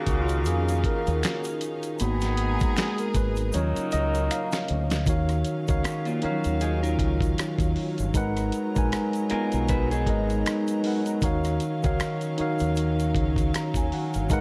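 R&B and neo-soul at a sultry, smooth 78 BPM in E-flat minor with a swung sixteenth feel, this excerpt from a longer piece opens on a warm, clean tine electric piano solo over bowed studio strings and mellow, soft-attack horn stabs that stop at 4.7 seconds, while a dark, round fingered bass, a gritty, compressed sampler-style drum kit with a thumpy kick, and a background egg shaker with finger snaps carry the groove through a drum fill into a second section where a slightly broken-up, lo-fi guitar with spring reverb adds a second line from 5.8 to 11.0 seconds, all within small room ambience over Ebm9 and Abm9 chords.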